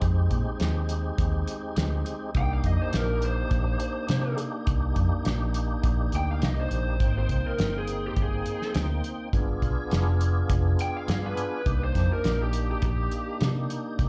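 Mournful and smoky, this straight-eighth soul blues excerpt moves at 103 BPM in 4/4 in C minor, heard as a live gig through the venue's PA with club reverb. A tonewheel organ carries the accompaniment throughout, full and lightly overdriven through a slow rotary speaker with chorus vibrato and slapback echo. Underneath, a vintage muted fingered electric bass sits up front with a dark, round, foam-muted tone, while a cloth-damped drum kit plays hi-hat, kick and snare with a fat snare, a tight kick and a rolled-off top. At 2.4 seconds a lead guitar through a small cranked amp enters with the melody, picked, overdriven and lo-fi with its own slapback echo, and it drops out at 13.4 seconds. The harmony moves from a rootless Fm9 through Cm9, Abmaj7 and a tense G7b9 before settling back on Cm9.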